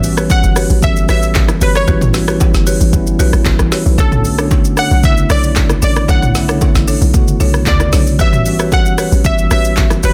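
Soulful and hypnotic, this amapiano excerpt moves at 114 BPM in a straight 4/4, with a glassy, crystalline wavetable pluck carrying the melody through chorus and delay over a mellow tine electric piano that moves from A13 to Bm9 and back. A hollow, bouncy log drum bass and an up-front deep house kit with a deep kick, woody snare, smooth hats, handclaps, rim clicks, shaker and toms drive the groove. A dry, buzzing marimba plays delayed stabs from 0.2 seconds, and very quiet bongos and congas with hard hands add bright detail, all in a close, dense and heavily limited modern mix.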